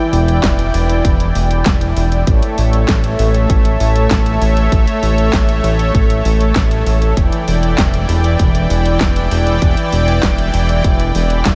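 A thick, detuned sawtooth bass sits up front with a filter-pluck attack and tube saturation, holding low between E1 and A1. This nostalgic, moody synthwave piece moves at 98 BPM in a straight 4/4, in E dorian. A smooth, soft-attack analog pad carries sustained chords from E3 to G5, bright and up front, with chorus, tremolo and sidechain pumping. A pop drum kit adds handclaps, warm hi-hats and a fat snare. A punchy, layered electronic kick joins at 0.4 seconds, and both drum parts carry studio reverb. The chords run Em7, then A at 2.3 seconds, and back to Em7 at 7.2 seconds, in a dreamy mix soaked in a huge ambient reverb, in an excerpt cut from a longer piece.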